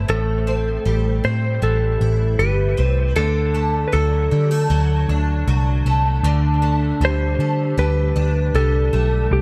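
Dream pop at 78 BPM in A dorian, hazy and ethereal, this short cut from a longer piece moves through Am7, D and Gsus2/D in a small room with light reverb and a heavy wash of echo. A shimmering, octave-doubled twelve-string acoustic guitar picks arpeggios with fresh strings, a boxy archtop body and a hint of finger squeak, spread by ensemble chorus and dub echo. Beneath it a round, punchy, foam-muted vintage electric bass sits up front, while from 0.1 s a dark, compressed lap steel slides a clean melody through its own dub echo.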